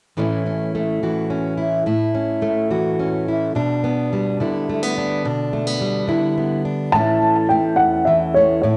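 In a straight 6/8 at 71 BPM, this brief folk excerpt sets an up-front, fingerpicked plugged-in steel-string acoustic guitar moving from A to G/B in a small, wet room with cassette-tape character, until a dark, woody, slightly detuned upright piano, its action noise audible and its mellow tone treated with tape echo, joins with the melody at 6.9 seconds, lending an anthemic, intimate glow.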